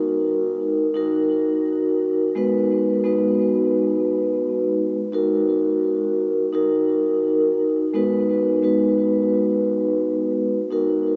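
A mellow, ringing vibraphone played with soft mallets and its motor off sits up front alone for the full 11.2 seconds of this reflective, moody hip hop fragment at 86 BPM with a light 16th-note swing, its filtered, delayed tones drifting over Ebm and Abm7 chords inside a huge ambient reverb that leaves the dreamy mix soaked and suspended.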